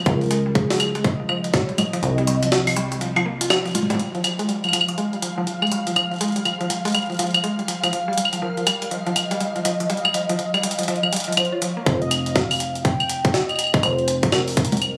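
Intricate and cerebral, this short IDM excerpt in F minor moves at 122 BPM with a 16th-note swing, as a sampler-style jungle kit of gritty claves, congas, hi-hat and high-tuned snare runs throughout beside a tight electronic kick that drops out at 2.0 seconds and returns at 11.9 seconds, while a woody, bright mallet-like pluck spins chorused, dub-echoed arpeggios under a filter sweep, a rubbery, dark acid bass anchors the opening and close, a velvety lead drifts through cassette-tape chorus and echo, and a grainy, flickering texture pumps in the background of the middle stretch, all in a light digital ambience.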